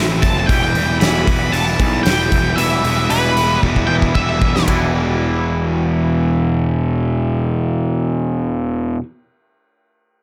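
In a straight 4/4 pulse, this brooding, angsty stretch of quiet-loud alternative rock is cut from a longer piece, with a big-room acoustic drum kit of punchy kick, fat snare, hi-hat and ride that plays until 4.8 seconds and rolls into a fill from 3.6 seconds. Up front, a crunchy overdriven guitar riff sits beside a growly, fuzzed electric bass, while a twangy, clean guitar picks chorused arpeggios in the background. A dark octave-fuzz lead guitar carries the solo melody through distortion and tape echo until 4.6 seconds, under light reverb as the harmony moves from Em to Em7 at 4.7 seconds.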